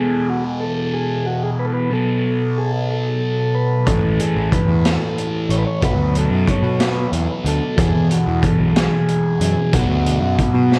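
Hypnotic and trippy, this short psychedelic rock excerpt moves in a slow 6/8 at 61 BPM, counted in dotted quarters with a straight feel. A distorted, double-tracked fuzz guitar sits up front from the start, its low riff colored by a phaser, while a reedy vintage combo organ carries the melody in a clean tone trailed by tape echo. At 3.9 seconds a fuzz-laden picked electric bass arrives, overdriven and amped, together with a raw garage drum kit of hi-hat, boomy kick and medium-tuned snare that sounds saturated and gritty with a rolled-off top. The harmony drifts through E5, B5 and A5 power chords before settling into Bm and E. A light small-room reverb keeps the whole thing close.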